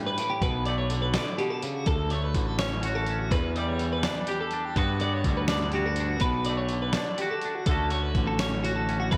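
A bright, clean twelve-string electric guitar spins arpeggios over a twangy electric guitar's accompaniment, a fuzzy overdriven picked bass entering at 0.4 s, and a gritty, thumpy sampler-style drum kit with a fat snare, all in a wistful, playful math rock and midwest emo groove at 83 BPM in 6/8 and D major, moving through Bm7, Dmaj7, Em7 and Gmaj7 with slapback echo on both guitars and a lush hall reverb giving a big arena sound to this clip cut from a longer piece.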